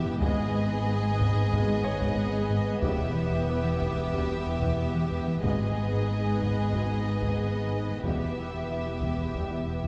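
Tense and brooding, this cinematic hybrid orchestral and electronic film-score excerpt moves at 92 BPM in G# harmonic minor, alternating between G#m and Em as a lush studio violin section carries the melody over a second symphonic violin line and a focused viola section. Underneath, a dark, woody cello section and a double bass section with soft attack and portamento hold the bass, joined by a mellow synth bass riff with ring modulation and a chorused analog pad with a slow attack. A very quiet, punchy trombone section sustains chords, a clear grand piano adds faint texture, and a distant taiko ensemble struck with hard sticks opens with a drum fill, all set in a moderate scoring-stage reverb.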